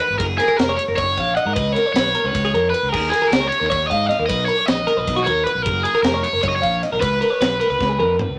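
A moderate studio reverb gives this short cut from a longer math rock and midwest emo piece an open, room-sized sheen. In a straight 7/8, the mood is playful and wistful. An up-front cranked stack guitar carries the melody with a bright, overdriven, picked tone. Beneath it, a clean, twangy twelve-string electric guitar picks compressed arpeggios through F#maj9, C#6, D#7sus4 and Bmaj7 before returning to F#maj9 and settling on C#7. A fuzz fingered electric bass adds a growly, overdriven low end. An airy, polished fusion drum kit with a high-tuned snare and tight kick works across cymbals and toms, ending with a drum fill from 7.8 to 8.4 seconds.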